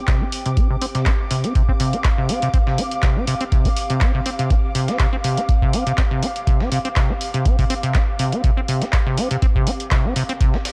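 A dark, lightly reverberant production opens this gritty, raw acid house excerpt at 122 BPM in 4/4, with a swung sixteenth feel and a deep, tape-saturated electronic kick up front. A squelchy, resonant sawtooth acid bass riff with fast-attack filter plucks sits forward in the mix, pumping against the kick under subtle chorus, while an ethereal, airy pad of detuned unison voices with slow attack and long release drifts behind it, pumping too, with ensemble chorus and built-in reverb over a C5 chord. Punchy analog drum-machine handclaps and hi-hats, re-recorded in a small room, play alongside a very quiet, compressed, sampler-style soul kit of hi-hat and medium-tuned snare caught in a large room.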